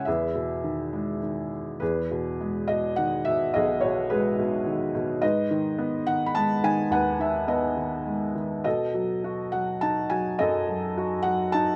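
Relaxed and hopeful, this brief classical fragment in 3/4 with rubato feel features a solo felt-muted upright piano, soft and intimate with a thin felt mellowness, sitting up front in close, detailed sound with light reverb as it moves through Emaj7, G#m and B7 across roughly 11.8 seconds.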